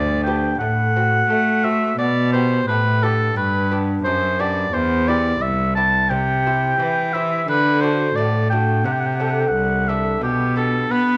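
A warm, softly attacked oboe with light vibrato sings the melody up front in this introspective, grave baroque-style sonata movement at 87 BPM in a rubato 4/4, over a focused, bowed cello bass from a single player with its own vibrato and a mellow, fingerpicked gut-strung lute whose delicate double courses fill in the continuo accompaniment, heard in a moderate large-studio reverb across an 11.2-second passage cut from a longer piece.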